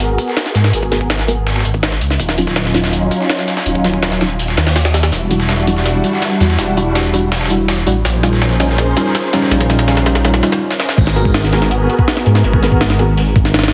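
A heavily compressed, radio-like sound with vinyl crackle and a moderate plate reverb frames this raw, nostalgic drum and bass cut at 164 BPM, taken from a longer piece. A pitched-up, gritty jungle kit with a thumpy kick and high-tuned snare sits up front alongside a rumbling, beating detuned saw bass, while an overdriven dusty soul kit re-recorded in a small room adds hi-hat, snare and tambourine until 10.5 s. A silky string machine holds sustained minor ninth chords from G#m9 through D#m9, Em9 and A#m9, and a deep, nasal chord stab with dub echo enters at 0.9 s carrying a filter sweep that builds, through a drum fill and a short break, to the drop at 11.0 s.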